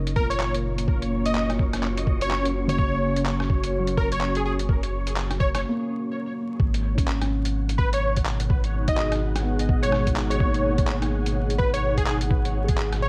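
Wrapped in vinyl crackle and a light digital ambience, this nocturnal, rainy future garage piece swings over a muffled, thumpy electronic kick and a pitched-down, tape-warm sampler kit of handclaps, hi-hat and rim click, while a round dub sub bass, a thick-felt upright piano with audible action noise and an airy, phased pad all pump against the kick, a breathy wind-like texture drifts in the background, and a catchy, detuned plucky lead carries the melody through a break at 5.6 seconds and a shift from F# to G#m at 6.6 seconds.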